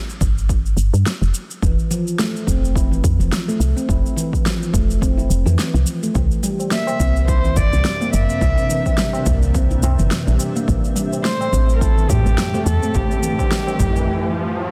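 A dense, heavily limited modern master with light small-room reverb frames this earthy, hypnotic organic downtempo fragment at 106 BPM, its 16ths swung over a punchy electronic kick, a fat layered snare with electronic shaker, and a woody, round FM bass that sits up front and pumps against the sidechain. A ringing, airy handpan enters at 1.6 seconds with delayed arpeggios struck by sharp finger strokes, and low-tuned tabla joins in the background shortly before a dark, intimate kamancheh arrives at 6.7 seconds, its bowed melody carrying light vibrato, portamento and delay. A cloudy, evolving granular pad sits in the background behind them over chords moving from Fmaj7 through C7 to Am7, while an electronic riser enters in the background from 12.2 seconds.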